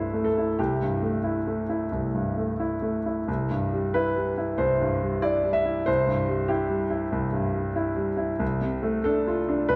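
A clear, boxy grand piano with short sustain sits up front and plays alone from C2 to E5 in this hopeful, intimate neoclassical minimalist fragment in C major, moving with rubato in 4/4 around 88-96 BPM through Am7/C, C at 3.3 seconds and Dm7/C at 8.4 seconds, set in a moderate scoring-stage reverb with a dark production.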